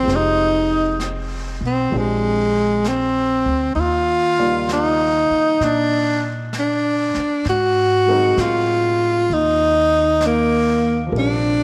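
Tender and romantic, this swung jazz ballad moves at 65 BPM in 4/4 and sits in Bb major, heard here as an 11.6-second slice of a longer piece. A close-miked tenor saxophone carries the melody up front, its warm tone marked by a soft attack and light vibrato in a jazz style. Beneath it, a dark, mellow grand piano with a vintage, short-sustained touch comps quietly in the background. A pizzicato upright bass on steel strings adds a woody, thumpy foundation. Brushes on a medium-tuned snare and hi-hat enter at 0.1 seconds, keeping a soft, natural small-room pulse far behind the others. The harmony drifts through rich chords from Fm9 and Bb13 to Ebmaj9 and Ab9 before settling on Bb69, all bathed in a wet spring reverb.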